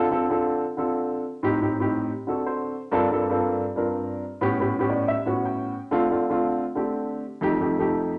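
A dark, woody upright piano plays alone from the start, spanning a broad register from low bass notes up to higher phrases in this short jazz excerpt at 160 BPM in a straight 4/4. The mood is sunny and danceable, with the mellow piano sitting up front in a wet club reverb as it moves through minor-seventh and dominant harmonies, from Dm7 through Gm11 and A7 before landing back on Dm7 and an F7. Piano fills stand out from 2.3 to 2.8 seconds and again from 4.7 to 5.8 seconds.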